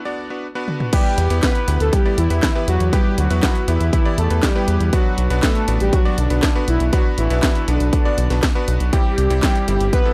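Bittersweet and nostalgic, this italo disco excerpt moves at 120 BPM in a straight 4/4 and sits in E minor. A bright, clangy electric grand piano opens alone with stabs over a Bm chord, and a house drum kit fill arrives at 0.7 seconds, its cracking snare, handclaps, toms, crash and warm hats layered and produced. From 0.9 seconds the punchy electronic kick lands up front, joined by analog synth brass carrying the melody, a bold, fat sawtooth-and-triangle voice with a sub octave, filter sweep, vibrato, chorus and analog delay. A deep, round analog bass follows at 1.2 seconds, dark and sustained with detuned sine, triangle and sawtooth layers, anchoring the harmony as it moves from Em to Bm and finally C. The sound is dry and gritty, with little reverb and a faint mains hum beneath the hardware-made mix.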